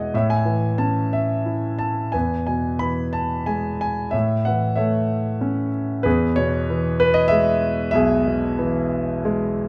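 Relaxed and hopeful, this short classical excerpt presents a lyrical solo piano piece in E major, moving in a gentle 3/4 with a rubato feel at roughly 87-98 BPM. A concert grand carries everything alone from 0.0 to 9.7 seconds, its tone warm and natural with a deep bass, sitting up front in the sound. The part spans B1 to B5, reaching from low register into the upper middle of the keyboard. The harmony sways between A and E, with changes arriving at 2.1, 4.1 and 6.1 seconds. Close, detailed microphones capture the instrument intimately, while a moderate recital hall reverb with a 1.4-second decay gives it a sense of space.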